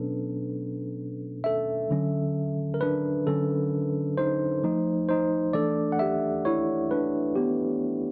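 A worn, slightly out-of-tune tine electric piano plays alone throughout this short R&B fragment, its clean tone heard through built-in speakers and placed up front in the mix. The mood is smooth and warm, set at a slow 66 BPM in 4/4 with a gentle swing on the sixteenth notes. The piano spans from B2 to F#5, moving through rich extended chords: Bm11 at the start, Dmaj9 at 1.9 seconds, then F7 and E7sus4 in quick succession. A moderate small-room reverb gives the playing a close, intimate space, and the overall production is dark and warm. Cut from a longer piece, the passage lasts just over eight seconds.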